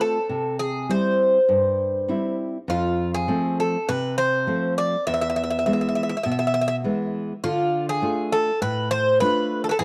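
A dry, close recording with a 1970s studio character and a touch of small-room reverb frames this short, cool and brooding Greek folk excerpt at 101 BPM in a straight 4/4. Up front, a picked Greek bouzouki carries the melody with a metallic, double-strung ring and some octave-doubled strings, while a fingerpicked classical nylon-string guitar with fresh strings supplies the accompaniment underneath. Both play throughout as the harmony moves from C to F to E before settling on D minor at 7.4 seconds.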